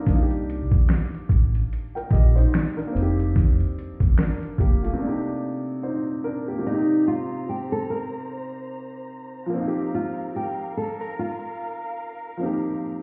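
A woody, vintage upright piano with cassette tape grain and plate reverb opens this melancholic, hazy lo-fi hip hop piece in C minor at 73 BPM, and is joined almost at once by a deep, round analog bass and a compressed, pitched-down sampler kit of thumpy kick, snare, hi-hat and finger snaps, all moving between Cm7 and F7sus4 with a light swing. Bass and drums fall away by 5.0 seconds, and from 6.6 seconds a dark bowed string section with vibrato and portamento holds sustained chords while a fingerpicked nylon-string guitar carries the melody. The whole mix sounds muffled, as if heard through a wall, with stone room reverb and vinyl crackle.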